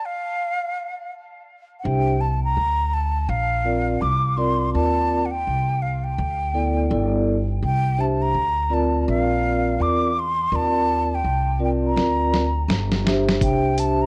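This jazz-hop excerpt has a warm, smooth mood and a swung feel, heard through a worn, warbling cassette sheen with gentle pitch drift and a moderate studio ambience. A breathy concert flute opens alone with the tongued, expressive melody, its lifted highs and vibrato carried on plate reverb and tape echo. At 1.8 seconds a mellow vibraphone played with soft mallets enters, ringing and metallic with a slow motor vibrato in a boxy small room, joined almost at once by a woody pizzicato upright bass with steel strings. Together they move through lush added-ninth and suspended chords. At 12.0 seconds a gritty, compressed boom bap drum kit arrives with a fill: pitched down and overdriven, with a thumpy kick, a medium-tuned snare and hi-hat.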